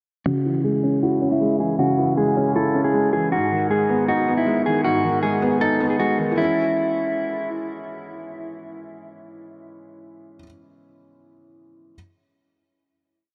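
A clean, fingered electric guitar loops a dark melody up front through spring reverb, analog delay and a low-pass filter, playing from 0.3 s until 7.5 s. Alongside it, a felt-muted upright piano repeats a soft, intimate arpeggio in eighths like a sampled loop, its action noise audible, and it carries on alone to 12.0 s. This short, melancholic half-time hip hop piece moves through a filter-swept breakdown into a final C#m chord at 6.4 s, all soaked in a huge, dreamy ambient reverb.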